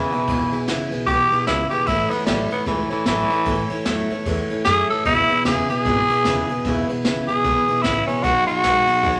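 Rockabilly with a retro, rowdy swing, this short excerpt is led by a raspy, growling tenor saxophone soloing up front in a jazz style with light vibrato. Beneath it, a twangy clean electric guitar plays a bright, compressed riff, a picked steel-string acoustic guitar adds accompaniment with audible finger squeak, and a pizzicato upright bass gives a woody, thumpy low end. A distant, roomy brush kit with dark cymbals, a high-tuned snare and a boomy kick sits in a small room, all within moderate studio reverb.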